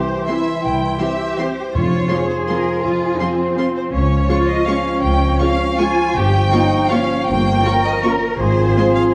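Sweeping and dark, this F minor orchestral ballroom waltz at 162 BPM sways with rubato as a soft, sul tasto chamber violin section carries the melody in the background. A rich violin section and a hollow, crisp-attacked flute trace second lines above a mellow solo bassoon and portamento-laden violas, while distant horns hold shadowy chords and an up-front double bass section anchors expressive cellos. Timpani sound briefly on F from 1.8 to 2.3 seconds, all within a reverberant scoring-stage space.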